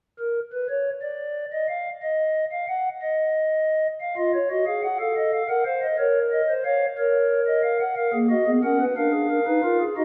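In a 6/8 at 60 beats per minute, counted in dotted quarters with a straight feel, this baroque-style four-part fugue for pipe organ moves at a contemplative yet driving pace. A single stopped-flute organ voice plays solo from 0.2 s, spanning Bb3 to Gb5 with a soft, hollow and mellow tone, its romantic voicing placed up front in the mix. The opening bars begin unharmonized, and at 4.0 s the harmony settles onto Fm7, then passes through F7/A, Bbm and Ebm/Bb before reaching Bb7/D at 9.0 s. A generous scoring-stage reverb with a 1.9-second decay surrounds the organ, and the instrument is tuned to A4 = 442 Hz. This brief passage is cut from a longer piece.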